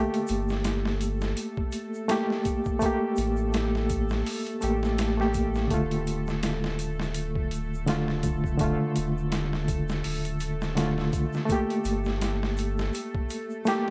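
Hypnotic and dark, this trip hop excerpt is built on a reedy electric piano, up front with light overdrive, fast tremolo and tape echo, moving between Gmadd9 and Dm over a deep, round sub bass. A compressed, pitched-down sampler-style drum kit gives a gritty, swung feel with a thumpy kick and high-tuned snare, while a tube shaker with group handclap sits in the background. A tense, string-like drone with vibrato and built-in reverb hangs beneath it all, and the whole recording is dry and coated in vinyl crackle.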